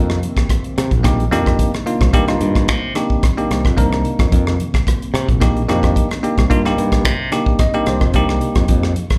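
A bell-like tine electric piano with slapback echo comps through this funky, nocturnal electric jazz fusion excerpt at 110 BPM in C minor, sitting over a Cm9 chord with a growly fingered bass, a punchy up-front drum kit of kick, hi-hat and rim click, a very quiet detuned analog pad, and a short piano fill at 7.3 seconds, all heard live through a club PA.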